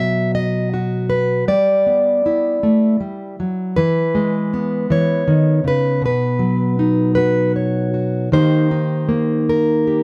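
A fingerpicked steel-string acoustic guitar opens alone on a B chord, setting a gentle, pastoral folk mood at an unhurried 52 BPM in 6/8. The playing is rubato, so the pulse breathes freely rather than holding strict time. The plugged-in jumbo guitar has a full-bodied tone and sits up front, ranging from B2 to E5. Its harmony moves through G6 at 1.5 seconds, then E and Badd9, before turning to D# as a new section begins at 8.3 seconds. A moderate studio reverb gives the guitar a sense of room around it, and this short cut from a longer piece ends at 10.0 seconds.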